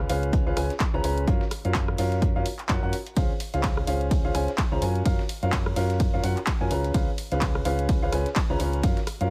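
A clear, woody upright piano riff with vintage 12-bit sampler grit and sidechain pumping leads this joyful, euphoric piano house excerpt over Db7, Gbmaj7 and Dbmaj7 chords alongside a dark, round hollow-body electric bass that also pumps. They are joined by a dry electronic kick up front, an analog drum machine's handclaps, hi-hat, ride cymbal and rim click, and a very quiet, tape-warm soul sampler kit of hi-hat and snare re-recorded in a large room, all heard within a digital ambience.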